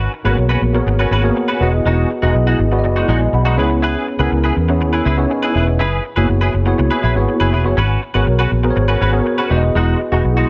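A clean, bright semi-hollow guitar riff and a dark, foam-muted fingered bass open this nocturnal, urban pop excerpt together at the very start, and a worn, slightly out-of-tune tine electric piano joins at 0.2 seconds as accompaniment. The bass sits round and amped up front, anchoring the low end, while the electric piano, also up front, has a clean, direct character. Both the guitar and the electric piano carry an ensemble chorus, with the picked, compressed guitar riff adding a hollow-body sparkle alongside the keys. The straight 4/4 groove moves through lush extended chords, G#m11, Emaj9, C#m7 and F#9sus4, before circling back to G#m11 and Emaj9. Light reverb gives the whole a soft sense of space, and the parts play through to about 10.5 seconds, as if lifted from a longer piece.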